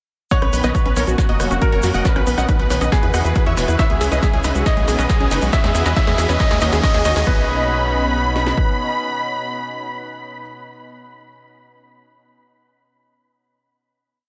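Uplifting, euphoric trance in B major at 138 BPM: a huge, detuned supersaw riff with 12-bit grit, pumping and analog delay leads over a brilliant grand piano line, with a quiet pluck doubling the riff, a lush chorused pad, a warbling arpeggiated pluck under a filter sweep, a punchy up-front techno kick and cracking snare with a background drum machine and grainy egg shaker, a rolling sixteenth-note sequencer bass and a faint riser, all building to a reverb-soaked final Badd9 chord at 7.3 seconds.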